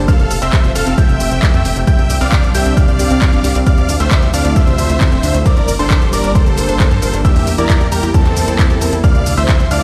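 A huge, euphoric supersaw lead carries the melody through this soaring, driving uplifting trance passage, its detuned sawtooth voices bright and compressed, pumping with the sidechain and trailing dub echo. Beneath it, an overdriven electronic kick sits up front at 134 BPM in D minor, joined by a punchy analog drum machine of handclaps, hi-hat and shaker, also overdriven. A tight sequencer bass with a filter pluck and moving notch drives the low end. A warm, round analog pluck spins arpeggios with chorus and echo. A lush, thick unison pad holds sustained chords with a slow attack and long release. High above, a clear, intimate grand piano adds a second line in the background, its action noise audible and its sustain short. The chords move from F through Csus2, Dm7, Gm and Edim back to Dm7, and the whole piece rings in a bare stone room on a big sound system, cut from a longer track and lasting just under 10 seconds.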